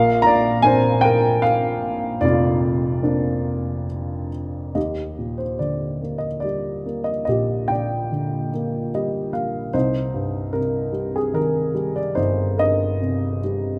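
Close, detailed microphones and a light reverb place a solo upright piano up front, so its woody tone and the noise of its action sit plainly in the sound. This is lyrical classical piano in triple metre, calm and intimate, with uneven beats and a rubato feel that lets each phrase breathe. The instrument is dark and mellow, slightly detuned in a natural way that adds character, and it ranges from F1 up to Bb5. An opening passage gives way to a second section at 4.8 seconds, moving from Bbadd9 to Ebmaj7, and a brief piano fill from 8.6 to 9.7 seconds leads into a Cm7 chord. Cut from a longer piece, it ends at 13.8 seconds.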